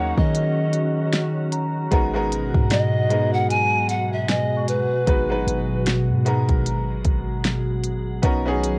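This short excerpt has the softness of a home cassette recording with a light reverb, setting a longing, sensual contemporary R&B groove at 76 BPM in G# minor, swung on the sixteenths. A smooth electronic drum kit sits up front from 0.2 seconds, with a soft kick, fat snare and smooth hi-hats, while a deep, boomy 808-style bass gives a mellow sine-like low end. A brilliant baby grand piano plays short-sustained accompaniment alongside a glassy, ethereal FM pad whose warbling vintage chords bloom slowly through ensemble chorus and their own reverb. An airy pan flute carries the melody up front, its tongued chiff and unsteady vibrato giving it a breathy, wooden character until it stops at 5.8 seconds. In the background, a delicate, bell-like celesta with soft felt hammers rings through tape echo. The harmony moves from D#m7 to G#m9 at 1.9 seconds before turning to Bmaj7 near the close.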